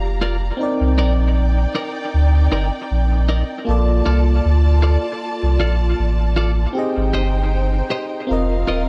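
Smooth and romantic, this short reggae excerpt moves with a gently swung sixteenth-note feel over a chord cycle from Gm7 through Cm9, Bbmaj7 and Abmaj7 to a closing F7sus4. A deep, round sub bass sits up front beneath a glassy, bell-like FM electric piano with chorus and dub echo, while a dark, lush studio string section adds a bowed second line with vibrato. Bright, twangy twelve-string electric guitar stabs with dub echo arrive at 0.2 seconds, all set in light digital ambience with some lossy compression artefacts.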